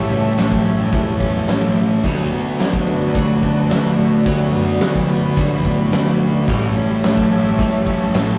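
Rock in a shoegaze and dream pop vein, this wistful, dreamy 8.4-second cut moves at 108 BPM in D major, shifting from A7 to D6 and back to A7 at 6.5 seconds. A huge arena kit sits up front with a fat snare, punchy kick and hi-hat, while a thick, dark fuzz guitar riff, a compressed clean guitar riff, direct-recorded clean guitar arpeggios and a round, overdriven fuzz bass blend in the background. Above them a lush, bright, detuned unison pad with slow attack and chorus holds evolving sustained chords, all wrapped in a wet stone-room reverb and the rough, tube-saturated sound of a rehearsal room.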